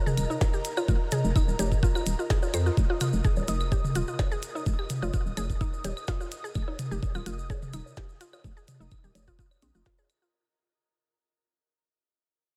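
A hollow, bouncy FM bass and an ethereal, detuned pad with chorus, tremolo and reverb open this cool, sparse minimal techno excerpt, soon joined by a woody, round mallet-like pluck with chorus and delay, all three pumping against an up-front knocking electronic kick, while electronic toms, claves and woodblock, distant grainy maracas and a tape-tinged click kit of tiny snare and clicky hats fill in the groove as the whole piece fades out from 2.8 seconds.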